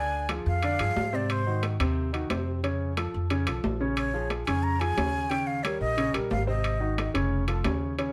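Light reverb gives this short cut from a longer Afro-Cuban jazz piece a subtle sense of space, with flute, piano and bass all up front. The mood is sunny and danceable, moving at a brisk 179 BPM in a straight 4/4. A breathy metal flute carries the melody with vibrato and a soft attack, dropping out briefly before returning at 4.0 s. Beneath it, a baby grand piano plays natural-sounding accompaniment with short sustain, while an acoustic upright bass, plucked pizzicato on gut strings, sounds woody and thumpy. Timbales with a ringing metal shell, recorded close, come in at 0.3 s, and the harmony moves through colourful chords such as Ddim, Ab7, Faug and Bbm7.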